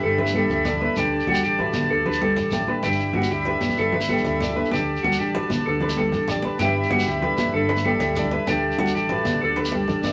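A fingerpicked, up-front nylon-string guitar, sweet reedy accordion chords with light tremolo tuning, bright, twangy, slightly broken-up electric guitar arpeggios through a small old amp, and a dark, round fingered electric bass open this sunny highlife guitar band excerpt in D major at 128 BPM in a straight 12/8, with close, high-tuned congas entering at 0.2 seconds and a grainy, mellow shekere at 0.3 seconds, all over a sway between G6 and Dsus4 in a wet studio reverb.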